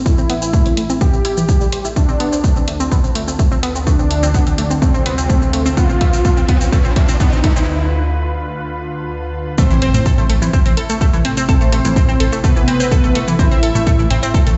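A lush, detuned unison pad and a round, ring-modulated analog pluck open this driving, dramatic melodic techno excerpt, both breathing with sidechain pumping as filter sweeps build through the first 9.6 seconds, the pad carrying a grainy 12-bit sampler grit and phaser while the pluck's arpeggios trail dub echo. A punchy, tape-warm kick sits up front in the straight 4/4 groove, with a high-passed shaker and hi-hat behind it, and a thick, mellow unison lead with vibrato and digital delay carries the melody over chords moving from Am to Dm. A drum fill and a background riser push the build-up before a short break, then the drop lands at 9.6 seconds with an impact, a return to Am, and a deep, rumbling detuned saw bass. A smooth, soft-attack supersaw joins as a second line in the background with its own dub echo while the lead returns. The whole mix sounds as if played through a big system in a bare stone room, dark at the top with only light reverb.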